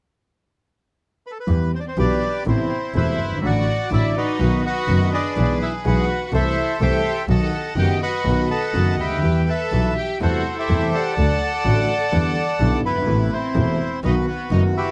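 A sultry, tense tango in E minor, this excerpt moves at 125 BPM in 4/4 with a rubato feel and sits just below standard pitch at A4 = 439 Hz. A reedy, vintage bandoneon carries the melody from 1.3 seconds, its band-limited tone placed up front as it ranges from E4 to A5. Beneath it, a concert grand piano with deep bass, a boxy body and long sustain supplies the accompaniment, while a single bowed double bass plays sul tasto with an airy, soft-attacked sound and light vibrato, dark and intimate in its low register. A smooth, even string section adds a quieter second line from 1.7 seconds, bowed with light vibrato and colored by tape echo. The harmony opens on a brief unaccompanied moment before moving through Em, Amadd9, Dadd9/A and B, later passing through Am7/E and Em7 and settling back on B, all captured with close, detailed microphones in a lightly reverberant space.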